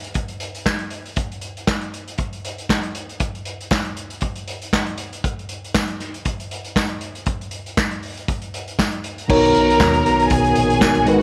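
Disco at 118 BPM in B major with a light sixteenth-note swing, glamorous and danceable, opening on a punchy, up-front vintage drum kit of kick, snare, hi-hat, handclaps and dark cymbals in a pumping small room, with a jingly, saturated tambourine joining in the background at 0.7 seconds. At 9.3 seconds the arrangement blooms onto a Bmaj7 chord as a lush, bowed string section, a mellow tine electric piano, a soft, flute-like tonewheel organ with chorus vibrato and key click, and a round, amped fingered bass all enter together. A moderate echo chamber reverb lends the short cut a polished, vintage sheen.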